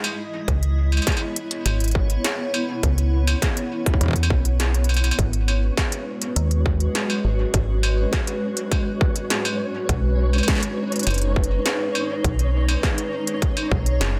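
A metallic FM bass sits up front in this glitchy, eerie IDM excerpt, its digital notes striking with a fast attack and then decaying as the harmony moves through C#m7, G#m7 and B6. Around it, a granular cloud pad holds blurred, evolving chords from the very start, its detuned unison tone mellow and full-bodied, shaped by a moving notch and its own built-in reverb. An industrial drum kit and a distorted electronic kick drum drive the straight 4/4 groove, both overdriven, re-recorded in a small room and placed up front. The kit brings a clanging snare, crisp hats and struck metal through tape echo, while the kick joins at 0.5 seconds. At 5.4 seconds a flickering, grainy texture drifts in far back in the mix, its slow-blooming triangle tone shrouded in reverb. Light room reverb and a dense, heavily limited modern master frame the passage, which is cut from a longer piece.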